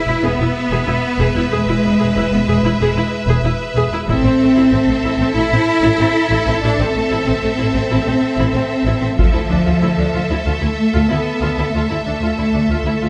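Cinematic, epic orchestral film score in A harmonic minor at 94 BPM, heroic and dark, this excerpt sets a warm, vibrato-rich violin section carrying an E5 melody over a lush second violin line, a clear viola accompaniment, and a rich, up-front cello section paired with focused double basses on the bass, while a taiko ensemble struck with heavy sticks in a small room punctuates at 4.1 and 9.2 seconds as the harmony moves from E to Am to Dmadd9 under light reverb.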